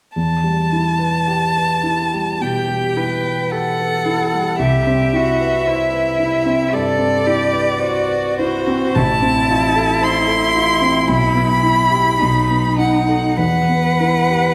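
A close, focused violin sings the yearning melody with vibrato over an intimate concert grand piano, whose deep bass and audible action noise fill out the accompaniment, while a rich, smooth-topped bowed cello enters with a second line at 2.4 seconds in this elegiac slow romantic piano trio movement in E minor, played at 54 BPM with free rubato and set in the lingering reverb of a recital hall.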